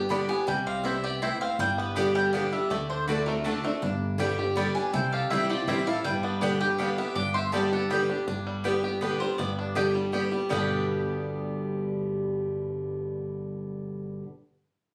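A brisk, straight 3/4 at 162 BPM drives this lively, joyful bluegrass excerpt in G major, where a twangy fingerpicked banjo and a bright, round mandolin carry the melody over a boxy, up-front picked parlour guitar, a dark, thumpy pizzicato upright bass and a second woody mandolin playing stabs with slapback echo, while a clear, nasal fiddle adds a light-vibrato second line in the background from 3.1 to 8.1 seconds, all caught on a phone in a small room with added studio reverb and compression.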